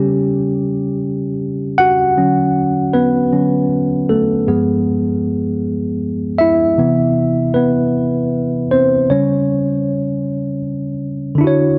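Tender and warm, this short R&B piece drifts along at a slow 52 BPM in a lilting 6/8 with a straight feel. A lone tine electric piano carries the whole performance, sounding worn and slightly out of tune, with a mellow, clean and direct tone placed up front. It ranges from G2 up to F#5 and moves through a tender progression of C#sus4, Dmaj7, G7b9 and Cmaj7 before the chords drop away at 9.1 seconds. A light reverb gives the intimate sound a touch of space. Cut from a longer piece, the passage plays as a single section that runs to 11.4 seconds.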